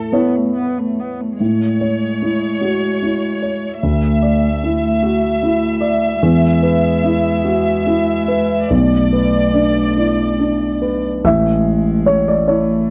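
A warm grand piano sits up front and carries the accompaniment from A1 to E5 in this hopeful, tender neoclassical fragment, cut from a longer piece in a rubato 6/8. Above it, a dark chamber violin section, played con sordino with vibrato, a soft attack and a smooth top, sings the melody in a veiled ensemble tone touched by a slapback echo. A single muted cello bowed with light vibrato adds a second line beneath, while the violins fall away at 11.0 s and the piano and cello carry on to the close. The harmony drifts from Aadd9 through Amaj7, Dsus2, E and Bm7 before settling back on Amaj7 at 11.2 s. The sound is a dry, close 1970s-style studio recording with light reverb.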